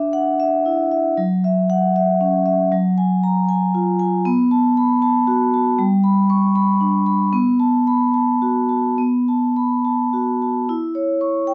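A solo vibraphone, struck with medium mallets and played with the motor off, rings out metallic and up front in this flowing, hypnotic fragment of a contemporary classical piece in a rubato 6/8, drifting through chords such as Dadd9, F#maj9 and G inside light reverb and a dark, warm production before settling on E5 at 10.7 seconds.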